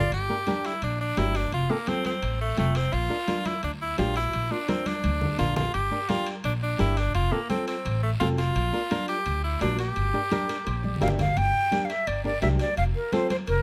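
An edgy, forceful tenor saxophone solo with vibrato drives this fiery, driving cumbia at 171 BPM in G dorian, sitting up front over a woody pizzicato upright bass, dark fingerpicked flamenco guitar, thick-skinned congas, and ringing timbales and raspy guiro set back in a large room. The chords cycle through Gm, F and Bb, with drum fills around 5.0 and 10.8 seconds and a nylon-string guitar fill just before the saxophone drops out. At 11.0 seconds an airy, expressive jazz flute takes over the melody in this excerpt, captured with close, detailed microphones and little reverb.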